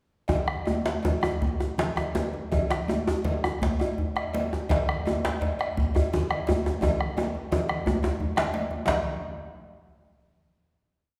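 Earthy and powerful, this complete West African drum ensemble piece in 12/8 speeds up through a tempo range of 107-125 BPM: a medium-tuned djembe with metal rattles plays lead phrases up front, its sound vintage and band-limited, over a deep, dark bombo heard close and dry, a warm second djembe in the background, ringing high-tuned congas played with soft hands, and a metallic cowbell bell pattern, with congas and cowbell both set distant in a large room, the whole piece bathed in a wet recital-hall reverb, and a drum fill from 6.8 s to 8.9 s leading into a final hit.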